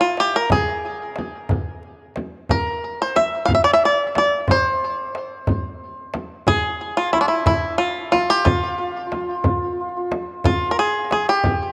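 A slow, straight 6/8 pulse at 60 BPM in dotted quarters underpins this hypnotic, soulful Persian modal piece in F avaz esfahan, cut from a longer work, with a close, dry tombak struck by hard hands sitting in the background and a large frame drum played with soft hands adding deep weight from 0.5 seconds. Up front, a twangy, fingerpicked bluegrass banjo carries the melody through tape echo from the opening, while a hammered santur enters at 2.5 seconds with a shimmering, ringing second line. A moderate plate reverb gives the ensemble a lingering space, and a brief new section begins at 10.5 seconds.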